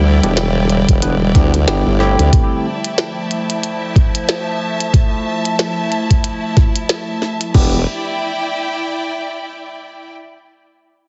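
A thumpy, pitched-down electronic kick drives this funky, gritty glitch hop excerpt from 0.9 seconds, alongside an overdriven glitchy kit of tiny snare, clicky hats and crash cymbal, a sawtooth formant-sweep wobble bass, barky electric piano stabs through a combo amp with digital delay, a warbling lo-fi tape-like pad with phaser and sidechain pumping, and a lush bowed string section that rings on alone from 7.8 seconds, inside a heavily compressed, radio-like mix.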